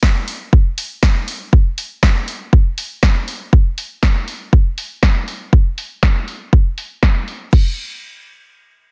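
Progressive house with a hopeful, uplifting mood, cut from a longer piece in a steady, straight 4/4. A punchy, layered electronic kick sits up front and loud, joined by a deep house drum kit whose crash cymbal, hi-hat and snare are filtered low-pass, with sidechain pumping on the hats, percussion and cymbals, and a punchy snare captured in a small room. Both parts play from the start until 7.6 seconds in a dry, dense, heavily limited mix, and the piece moves into a new section at 7.5 seconds.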